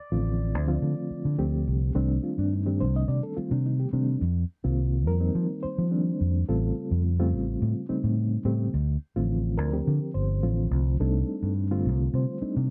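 A round, amped fingered electric bass sits up front and carries this driving, nocturnal stretch of electric jazz fusion, its dark tone holding down the low end from 0.1 seconds through to the close. Beside it, a reedy electric piano supplies the accompaniment with a fast tremolo, its worn, slightly out-of-tune voice coming through built-in speakers and sitting close in the mix. A dark, mellow grand piano opens the passage with a brief melodic touch colored by tape echo, then falls silent at 1.6 seconds. The harmony moves through minor-seventh, suspended and altered dominant colors in a straight four-beat feel. The sound is dry and close, in the manner of a 1970s studio, and the passage is cut from a longer piece.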